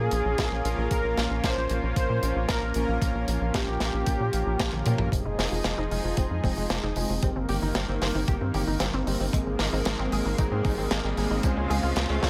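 Heard in a light small-room ambience, this driving, nocturnal synthwave excerpt at 114 BPM in Bb dorian opens with a smooth, detuned supersaw melody over a thick, airy unison pad with sidechain pumping, fat and brassy chorused synth stabs, a punchy sequencer bass, a thumpy electronic kick and a mid-forward acoustic kit of hi-hat, snare and toms, until a drum fill at 4.7 seconds leads at 5.1 seconds into filter sweeps on the brass and on a new wave-folded pluck arpeggio, a twangy, direct-recorded clean electric guitar riff through ensemble chorus and delay, and a very quiet riser from 8.9 seconds as the chords move from Fm7 to Dbmaj7.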